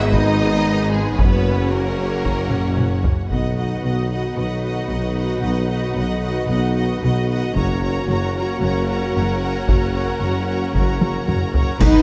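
Heroic and majestic, this straight 4/4 cinematic orchestral cue at 113 BPM in F# major sets a bright, vibrato-laden violin melody over a clear second violin line, a very quiet viola accompaniment, lush sustained chords from studio strings and mellow French horns and trombones, and a low foundation of rich cellos, distant double basses and solo tuba, while a close, dry taiko ensemble with heavy sticks drives the passage, drops out around 4.3 s and returns at 7.6 s, before dark clash cymbals and concert bass drum land a final accent at 11.8 s in a moderate scoring-stage reverb.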